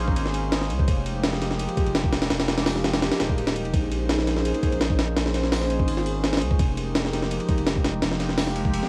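Frenetic yet atmospheric, this drum and bass cut at 168 BPM in Bb minor sets a gritty, pitched-up breakbeat kit with a thumpy kick, high-tuned snare, hi-hat and ride cymbal up front in a small room. Beneath it, a deep, saturated sine sub bass holds sustained low notes while a detuned, warbling tape-like pad drifts through nostalgic Bbm11 and Fm11 chords, colored by chorus, phaser and 12-bit sampler grit. The whole fragment, cut from a longer piece, carries the lo-fi haze of a home cassette recording, with vinyl crackle and light reverb across its two repeated drop sections.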